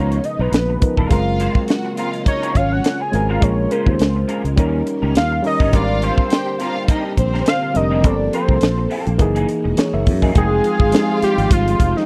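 A fat, detuned analog synth lead solos from the start over barky, overdriven electric piano, a phased string machine in the background, a slightly broken-up lo-fi guitar riff, a growly fingered bass and a tight, dry funk kit with a high-tuned snare, all in bittersweet, silky 1970s-style soul at 104 BPM with a swung sixteenth feel, as a lush, bowed string section with vibrato adds a second line from 1.1 seconds and the guitar drops out at 10.4 seconds in this close, dry excerpt.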